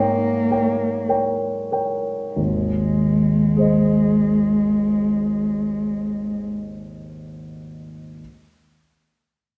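A bowed solo cello sits close and up front, singing a narrow, expressive melody with vibrato, soft attacks and gliding portamento until it falls silent at 6.4 seconds. Beneath it, a concert grand piano supplies the accompaniment, its deep bass, open tone and long sustain ringing on until 8.2 seconds. This brief, serene romantic classical duo moves in a flowing triple metre with rubato, slowing through the opening phrase before a new passage begins at 2.4 seconds. There the harmony settles from an Eb7 chord over an Ab bass onto a plain Ab chord. A wet recital-hall reverb wraps both instruments in a warm, intimate glow, and the passage is cut from a longer piece.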